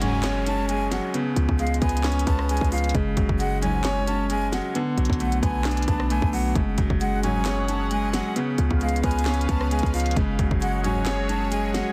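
A punchy, heavy 808-style bass anchors this melancholic, hard-hitting trap excerpt at 133 BPM in half-time, sitting up front with an electronic drum kit of hard-clipped kick, sharp snare, crisp hats, handclaps and rim clicks. A bright, brilliant concert grand piano carries the F# harmonic minor chords, while a mellow tine electric piano plays delayed arpeggios in the background and a breathy jazz flute adds an unsteady, vibrato-laden second line with delay. Short, dark synth brass stabs with chorus and delay recur every few seconds, a very quiet downlifter sounds until 2.9 seconds, and a sweeping, resonant sawtooth pad enters at 6.6 seconds, all set in a digital ambience with a dense, heavily limited modern master.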